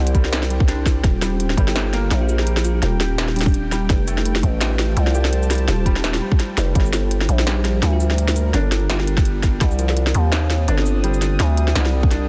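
Half-time drum and bass in G minor at 168 BPM, heavy and tense, driven by a hard-clipped electronic kick and a growling, buzzy 808-style bass with tube saturation, both sitting up front, while an overdriven industrial kit adds a clanging snare, crisp hats and shaker with a light swing. Beneath them, a dark, detuned analog pad holds sustained chords with chorus and sidechain pumping, and a felt-muted upright piano plays soft, intimate arpeggios roughened by 12-bit sampler grit and digital delay. A very quiet, bell-like FM electric piano offers brief melodic phrases from 2.2 s and 7.9 s, the kick drops out at 6.4 s, and the dry, dense, heavily limited mix keeps the whole section pressing forward.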